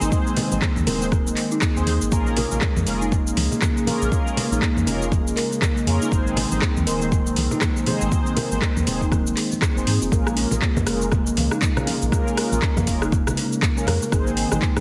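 A swung sixteenth-note groove in 4/4 drives this earthy afro house excerpt. A deep, layered electronic kick arrives at 0.1 seconds, beneath an overdriven afro-pop kit of metallic hi-hats, cabasa, handclaps and rim clicks. Damped, low-tuned congas with a thick skin sit in the background from 0.4 seconds. A round sine sub bass, woody thumb-plucked kalimba arpeggios with ringing digital delay, and dark, detuned sawtooth brass stabs with a filter sweep all pump against the kick, alongside a smooth, slow-attack analog pad soaked in chorus and phaser. The harmony moves between Ab and Bbm7 in a light, digital ambience, and the mix has a heavily compressed, radio-like sound.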